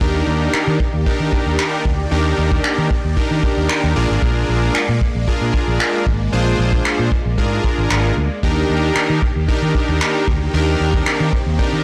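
A blown-out, overdriven recording with light reverb carries this summery, upbeat dance-pop clip at 114 BPM in Eb major, moving from Ebmaj7 to Bb7 at 4.0 seconds and back to Ebmaj7 at 8.4. Up front, a fat, bold polysynth with detuned sawtooth tone plays sustained accompaniment, while huge, lush supersaw chords with a moving notch sit in the background, both pumping with sidechain. A dark, round fingered electric bass also pumps, and an acoustic vintage brush kit adds finger snaps and a punchy kick in a natural studio room.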